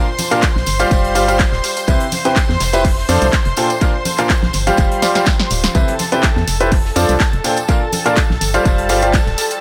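Piano house at 124 BPM with a light swing, this uplifting, joyful cut is led by a bright, brilliant baby grand playing an up-front riff with audible action noise and analog delay. Beneath it, a silky, chorused analog string pad holds sustained chords, and a hollow, organ-like FM bass enters at 0.6 seconds, both pumping against the punchy, layered electronic kick. A dry analog drum machine supplies handclaps, hi-hat and snare, while a big-room acoustic kit and soft-handed congas and tambourine sit in the background, with a drum fill at 5.0 seconds in an echo-heavy small-room mix.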